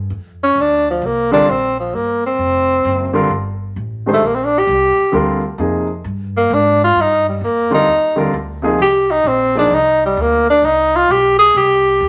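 A swung 4/4 at 131 BPM drives this cool, searching modal jazz passage in G phrygian, cut from a longer piece, where a woody pizzicato upright bass plays throughout under a breathy tenor saxophone solo with vibrato and a soft attack that sits up front from 0.4 s, while a polished, present grand piano comps on Gm7 and Cm7 from 1.3 s to 9.7 s inside a moderate studio reverb.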